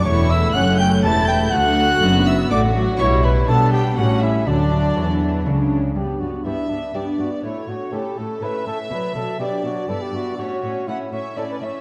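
A lively, festive baroque-style concerto movement in D major, this short excerpt moves at 122 BPM in a straight 3/4. A mellow solo trumpet with light vibrato carries the melody, doubled above by a focused, vibrato-rich chamber violin section, while a close studio violin section adds a second line beneath. A delicate, fingerpicked lute on gut strings sits in the background alongside a distant, smooth viola section, filling out the accompaniment. Underneath, a rich cello section holds the bass line throughout, joined by a dark, bowed double bass section that drops out at 6.0 s as the music turns toward G and B minor harmonies. Everything is bathed in a concert hall reverb with a 2.2 s decay, giving the dark production a spacious, resonant glow.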